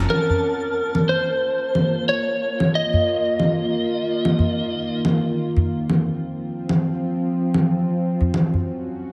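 A swung sixteenth-note groove in 4/4 drives this short excerpt of organic downtempo, carried by overdriven, layered electronic congas placed up front and a small, dry acoustic udu recorded close. Alongside them, a tense, string-like drone built from sawtooth and triangle tones, with a noise layer and ring modulation, sits up front and holds sustained chords through the whole 9.1 seconds. A filter sweep and its own reverb shape the drone's slow attack, vibrato and long release. A bright, crisp, fingerpicked kora rings briefly in the background with delay and slapback echo, gone by 1.3 seconds. A slightly broken-up, compressed electric slide guitar played with fingerpicks carries the melody up front until 5.0 seconds, also treated with delay and slapback echo. The harmony moves from Bbmadd9 through Eb5 and F5 to Gb5 in an earthy, warm mood, all set in a wet concert hall reverb with a big arena sound.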